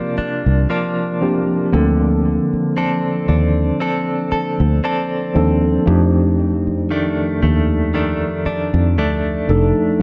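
A slow 4/4 groove at 58 BPM with a light sixteenth-note swing carries this smooth, romantic R&B excerpt, moving from C9sus4 to Bbmaj9/D and settling on F13 at 5.9 seconds. A mellow tine electric piano supplies the accompaniment, while a clean, direct-recorded electric guitar plays compressed, picked arpeggios up front, colored by tremolo and tape echo. Underneath, a round, foam-muted fingered electric bass sits prominently in the low register, all within a dark, warm production with light reverb.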